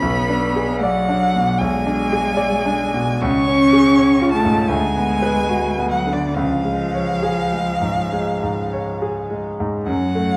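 Dark, reverberant recital-hall sound frames this solemn, melancholic fragment of a slow romantic movement for piano trio, moving with rubato at 66-83 BPM in 4/4 and tuned to A4 = 438 Hz, where an up-front, rich violin sings the melody with expressive vibrato and portamento over a smooth, distant cello second line and an intimate grand piano accompaniment with long sustain and audible action noise, the harmony passing through G#dim/B, C#, Bm/D and back to C#.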